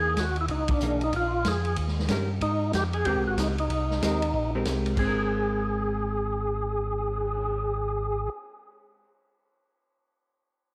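A swinging 188 BPM groove in 4/4 drives this greasy soul jazz organ trio fragment in Ab major, where a fat, lightly overdriven tonewheel organ with percussive key click and slow rotary speaker carries the melody over a round, mellow organ bass line, a dark, compressed hollow-body guitar comping underneath, and a vintage kit with dark cymbals and a tight kick entering at 0.2 s, with a band accent at 0.7 s, all set in an echo-chamber reverb and small room ambience.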